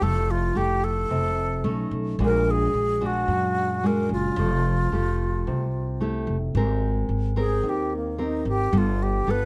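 Bossa nova at 110 BPM, romantic and relaxed, in which an airy, vibrato-laced alto flute with lifted highs carries the tongued melody over a fingerpicked, full-bodied nylon-string guitar and a woody pizzicato upright bass, all three up front, with Fmaj9 harmony shifting to Abmaj9 as the flute takes a solo at 6.5 s, in a dark production with light reverb, tuned to A4 = 437 Hz and cut from a longer piece.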